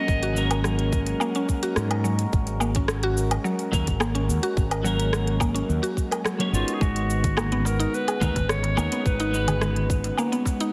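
A steady, straight 4/4 pulse at 107 BPM anchors this hypnotic, meditative organic downtempo excerpt in G# minor, driven by a tight, up-front electronic kick and a crisp-hatted electronic kit of cabasa, hi-hat, rim click and woodblock, both tape-warmed and re-recorded in a large room. Beneath them, a dark, round fretless electric bass sits prominently with sidechain pumping, while a mallet-like FM synth pluck spins woody, percussive arpeggios with chorus and tape echo. A twangy, clean electric guitar adds compressed, picked accompaniment treated with ensemble chorus, tape echo and sidechain pumping, and a smooth, warbling vintage analog pad holds sustained chords in the background, opening on G#madd9, with chorus and pumping of its own. A bright, classical-style solo clarinet with delay states a brief melodic fragment at the very start, then returns at 6.5 seconds, and a very quiet, close and dry metal-shell darbuka played with soft hands joins at 7.2 seconds. 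The whole mix carries light reverb and digital ambience, squeezed into a heavily compressed, radio-like sound.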